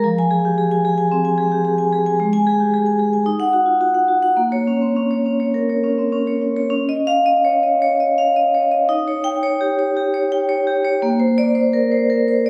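Captured on a phone in the room, with a wet recital-hall reverb and compression, this reflective, hypnotic fragment of a contemporary classical piece for solo vibraphone places the metallic, ringing instrument up front, struck with medium hard mallets and carrying a fast motor vibrato as it moves in free rubato through Fmadd9, Ebm and Bbmadd9 before a second section from 6.7 seconds turns to Dbadd9 and Eb7 and arrives on Bbadd9.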